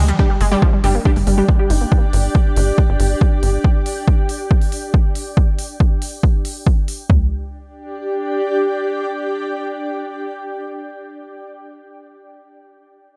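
Driving peak-time techno with an industrial, relentless mood, cut from a longer piece, opens on a bright, detuned unison pluck riff carrying overdrive, 12-bit sampler grit and digital delay, alongside a punchy supersaw stab thickened by analog chorus, cassette tape and tape echo, both swept through filters until 1.9 seconds. Beneath them, a tight, saturated sequencer bass pumps to the sidechain up front, while an overdriven analog drum machine delivers a punchy kick and toms, and a tape-warm techno drum kit adds smooth hats, shaker and toms from a small room. From 1.0 seconds, a cloudy, evolving granular pad with its own reverb drifts in and lingers, pumping to the sidechain, as the drums drop away after 7.2 seconds.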